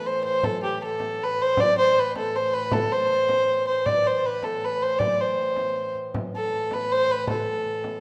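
A driving, straight three-beat pulse carries this short cut from a medieval dance with an ancient mood. A single bowed fiddle sits up front and close, playing the melody with a woody, shadowed sul tasto tone, light vibrato and portamento. Beneath it, a pedal harmonium holds a reedy, breathing drone, and a warm, close frame drum enters at 0.3 seconds, all set in a moderate recital-hall reverb.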